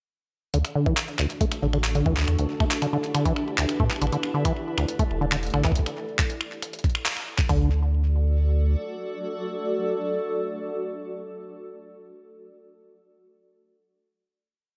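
A glitchy, playful IDM piece opens at 0.5 s with a round, sine-based sub bass tracing a dub-style line, a rubbery, resonant sawtooth acid bass cycling an 11-step loop that drifts against the bar through a delay, and a gritty, pitched-up, sampler-style jungle kit that scatters closed hats, finger snaps and handclaps through a glitched, ever-changing beat with its own delay. At 0.9 s a second gritty, pitched-up jungle kit joins, carrying a thumpy kick and open hat in a broken pattern. Both kits sit up front with a compressed, tape-warm grit, and the sub bass gains body from tube saturation. At 1.1 s a cloudy, blurred granular pad drifts in with slow-attack chords under its built-in reverb, its moving notch keeping the texture evolving as the harmony shifts slowly. After a band accent at 7.1 s the groove falls away around 7.5 s, leaving a final chord on the mellow pad, with the sub bass lingering until about 8.8 s as the pad rings out to the end.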